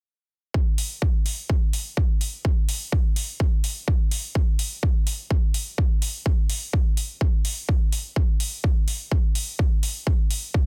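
A punchy, layered electronic kick drum sits up front from 0.5 seconds, joined by metallic hi-hats at 0.8 seconds, in this emotional, powerful excerpt of festival progressive house at 126 BPM in a straight 4/4, its dry, small-room sound pressed into a dense, heavily limited modern master.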